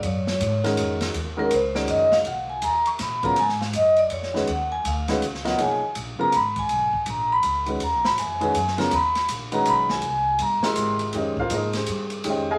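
A swung waltz at 162 BPM in 3/4 drives this cool, searching modal jazz excerpt in G# dorian, cut from a longer piece. A swinging big-band drum kit with dark cymbals, a medium-tuned snare and a punchy kick sets the pulse on hi-hat, kick, ride and snare, its sound airy and polished as if in a hall, while a woody pizzicato upright bass with steel strings sits low and dark beneath it. The vibraphone, struck with medium hard mallets and shimmering with a slow motor vibrato, carries the melody as a metallic, ringing solo from the very start until 11.1 seconds, placed up front in the mix. An up-front upright piano with a short sustain joins at 0.6 seconds to comp through harmonies such as Ebm11, G#m9 and C7b13 before settling on Fm11. Moderate studio reverb and a layer of vinyl crackle give the whole a slightly worn character.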